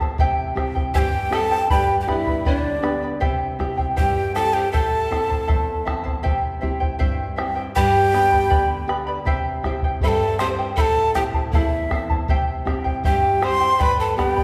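Fingerpicked charango with shimmering double strings, warm classical nylon-string guitar and a round, up-front bombo open this wistful, melancholic Andean folk piece at 79 BPM in a straight 2/4, cycling through C, G and Am. At 0.9 seconds a bright, reedy quena enters with a crisp chiff to carry the melody up front, joined by a mellow bamboo pan flute on a lower second line, both with a breathy straight tone. The ensemble sits in the wet reverb of a recital hall, church or concert hall, with a 1.6-second decay.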